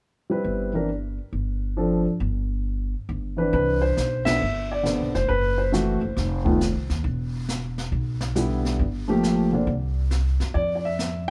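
Playful and warm, this short excerpt from a longer jazz piano trio piece swings at 137 BPM in 4/4 in C major. A dark, mellow grand piano carries the melody from the start, its smooth, vintage tone and long sustain sitting up front, joined almost at once by a woody pizzicato upright bass on steel strings, also close and present. At 3.5 seconds the brush drum kit enters, with brushed snare, hi-hat, kick, ride and snare heard in a natural small-room sound marked by dark cymbals, a medium-tuned snare and a boomy kick. The whole band hits an accent at 4.2 seconds as the harmony moves through rich colors such as Cmaj9, F#m7b5, Em7 and Gm9, with brief chordless gaps along the way. A moderate small-room reverb gives the trio a close, small-room setting.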